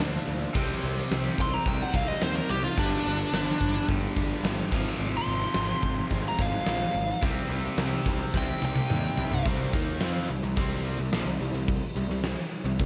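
Driving and aggressive, this hard rock excerpt pits a dark, smooth overdriven lead guitar melody with tape echo, entering at 1.4 seconds and soloing until 9.4 seconds, against background riffs from a bright distorted guitar with slapback echo, a very quiet double-tracked overdriven guitar and a cranked stack guitar with phaser, all over a growly fuzz bass and a huge, up-front arena drum kit with a fat snare, punchy kick and bright cymbals whose fill leads into a new section at 9.5 seconds.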